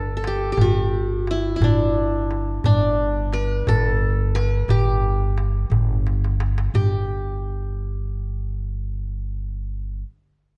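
A dark production with light reverb frames this festive, passionate Arabic maqam ensemble excerpt in a straight 6/8, with a bright, plectrum-plucked qanun carrying the melody up front, its triple strings giving a bright-edged shimmer. Beneath it a pizzicato upright bass holds a low G, woody and growly with a thumpy weight, while a large, metal-shelled darbuka adds crisp, deep strokes that sound close and dry. The darbuka plays a fill from 6.1 s into a new section at 6.7 s and falls silent at 7.1 s, leaving the qanun and bass to carry on.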